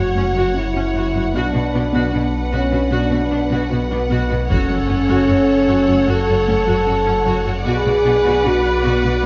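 This cut from a longer cinematic piece blending orchestra and electronics has a dark, rounded sound with a muffled top and a moderate scoring-stage reverb. The mood is tense and futuristic. Up front, a mellow French horn section holds sustained chords, while a lush, bowed viola section gives intense accompaniment beneath a soft-attacked, expressive violin line. In the background, a glassy, crystalline wavetable pluck spins arpeggios through chorus and tape echo, its tone shaped by a filter sweep. Low down, a thick, beating detuned saw bass with a menacing edge shares the bass role with a distant, even cello section, which stops at 9.1 seconds. Hard-stick taiko drums sound only from 4.5 to 6.0 seconds, band-limited and vintage in tone at the back of the mix.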